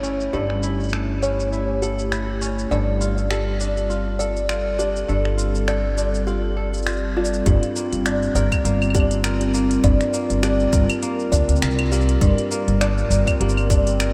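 A gently swung 4/4 groove at 101 BPM, with 56% swing on the sixteenths, carries this autumnal, delicate folktronica piece in G dorian. Low-passed claves, finger snaps, smooth hi-hat and shaker from an organic electronic kit tick softly under a woody, thumpy pizzicato upright bass that sits up front on gut strings. A fingerpicked kora rings out crisp arpeggios through a diffuse ambient delay, while a tinkling, slightly out-of-tune music box adds a second line through the same delay and stops at 13.7 seconds. Underneath, a warbling lo-fi pad blends detuned square, triangle and sawtooth tones into slow-attack, nostalgic chords treated with chorus and phaser, moving from A7/G to Dm/G. At 7.5 seconds a tight electronic kick drum enters as the harmony settles on Gm7, and the dreamy mix is soaked in a huge ambient reverb.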